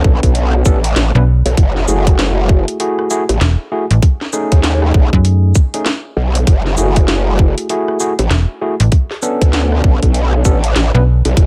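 A snappy, slap-like FM bass with a metallic, digital attack and quickly decaying notes sits up front after arriving at 1.1 seconds, giving this playful, swaggering glitch hop passage its bounce. Alongside it, a growling, aggressive growl bass wobbles through a formant filter, its detuned sine tone thickened by chorus and tube saturation into a bright, compressed roar that sustains from the opening. A tight, layered electronic kick drives the 4/4 groove up front, joined at 0.2 seconds by a drum and bass kit of cracking snare, metallic hi-hats, rim clicks and shaker, both re-recorded in a small room and swung on the sixteenths. Stabs from an overdriven tine electric piano, barky and gritty through a combo amp, pump against the sidechain and trail tape echo as the harmony moves from Bm9 to F#m9, B13, back to F#m9 and Bm9. A digital ambience frames this short section cut from a longer piece.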